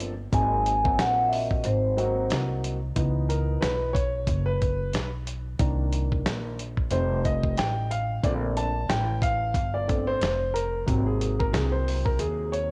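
Jazz-hop in a mellow, nocturnal hip hop vein, this short cut from a longer piece rides a lazy swung sixteenth-note feel in 4/4 over a small-room home cassette recording with light reverb. A dusty, sampler-style drum kit sits up front with a thumpy kick, a medium-tuned snare and hi-hat, sounding compressed and gritty, with a cassette-tape tint, re-recorded in a small room. The pizzicato upright bass is equally forward, growly and bright with steel-string bite. A vintage upright piano carries the harmony through chords such as G#7, C#m7, Cm7, F7 and A#maj7, its woody, smooth tone full of long sustain and intimate action noise, and it takes a solo from 3.0 seconds after a brief break. Early on, from 0.3 to 2.3 seconds, a soft-mallet vibraphone with its motor off states a ringing, metallic melody that sounds band-limited and tape-worn, before a drum fill at 12.2 seconds closes the passage.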